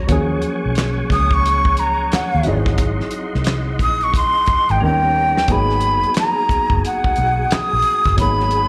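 Captured live through a club PA with light room reverb, this relaxed, smooth neo-soul R&B excerpt sets a breathy, unsteady jazz flute melody with slapback echo up front, entering at 1.1 seconds, over a worn, slightly out-of-tune tine electric piano with overdrive and slapback echo, clean percussive tonewheel organ chords through a fast rotary speaker with chorus vibrato, a dark, foam-muted fingered electric bass, and a dry, damped 70s drum kit with a fat snare, tight kick, hi-hat and handclaps that plays a fill at 4.8 seconds before the second section.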